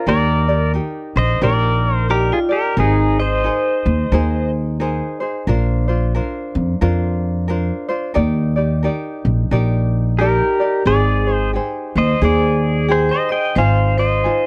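A dry, close 1970s-style studio sound with small-room reverb frames this dreamy, languid Hawaiian excerpt at 89 BPM in a swung 4/4 in Eb major, where an up-front, twangy, compressed electric pedal steel guitar carries the melody with slide and volume swells, and a dark, metallic vibraphone with hard mallets and slow motor vibrato rings behind it as a second line, both heard from the start to 4.5 seconds and again from 10.2 seconds, while a light, bright fingerpicked tenor ukulele picks out the gentle Ebmaj7, Abadd9 and Bbadd9 harmony throughout and a woody, up-front pizzicato upright bass anchors the low end.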